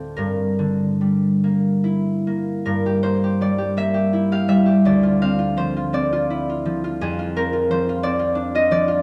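A bright, ringing concert harp plays alone and up front, fingerpicked across a range from D2 to C6 in this dreamy, serene classical piece in G minor, a brief cut from a longer work. The 6/8 pulse moves with rubato at roughly 47-60 BPM in dotted quarters, drifting through Gm6, then Dm9 at 4.9 seconds and Fm6 at 7.0 seconds. A wet concert hall reverb of 1.8 seconds surrounds the acoustic harp, and the production has a dark, warm cast.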